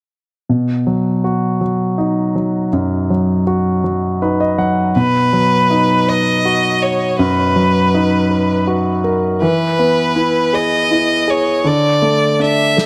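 Set in a six-eight metre with a straight feel, this tender, heartfelt pop ballad opens on a concert grand piano that carries the accompaniment alone from 0.5 seconds, its intimate tone marked by audible action noise, deep bass and long sustain. A piano fill leads into the second section, where a single bowed violin takes up the melody at 5.0 seconds, smooth and even with vibrato, its rich voice touched by digital delay and set at a slight distance. The harmony moves through B and E before arriving on a D5 chord late in the passage. A medium-tuned acoustic snare drum sounds only at the very end, at 12.8 seconds, mid-forward and up front in the small room. Light reverb and the ambience of a small room surround the polished performance, which is cut from a longer piece.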